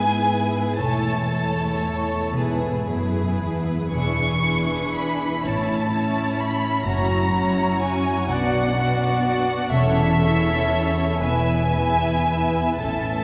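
A slow, romantic classical movement for string orchestra in A major, this serene passage moves in a gentle 6/8 at roughly 36-43 dotted-quarter beats per minute, with a freely breathing rubato. Up front, the first violins carry the melody high in their range, their bowed tone softly attacked, expressive and sweetened by vibrato and portamento, while a second violin line beneath them sounds rich, smooth and even. Violas supply a more distant accompaniment, and cellos anchor the bass with an expressive, vibrato-laden sound, joined at 0.8 seconds by woody double basses sitting in the background. The harmony drifts from E/G# to A/E and through E7, F#7 and Bm before settling back on E, giving the passage a tender, unhurried character. A lush cathedral reverb with a long 4.8-second decay surrounds the ensemble, and the sound is dark at the top, as if heard in a church or concert hall, in this short 13.2-second extract cut from a longer piece.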